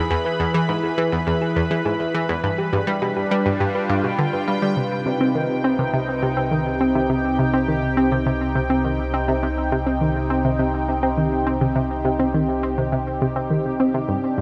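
Opening on a bright, resonant sweeping pad of detuned sawtooth chords and a mellow, tine-like thumb-piano-style pluck arpeggiating in the background over E and G7, this hypnotic, cosmic stretch of sequencer-driven ambient space music at 103 BPM brings in an up-front, ring-modulated analog pluck riff with chorus and analog delay from 0.1 s, then turns to C harmonic minor at 4.8 s as the thumb-piano pluck stops and a deep, dark round analog bass enters, the mix bathed in a huge, wet reverb with an 8.4-second decay.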